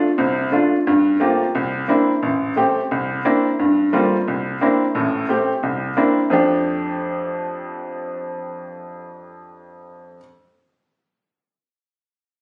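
Joyful, brassy swing jazz at 176 BPM in F major, cut from a longer piece, in which a clear, natural baby grand piano with short sustain sits up front comping through Gm11, C9 and Am7 changes from 0.0 to 10.2 s, heard as if captured on a phone in a club-like room with a moderate large-studio reverb and compression.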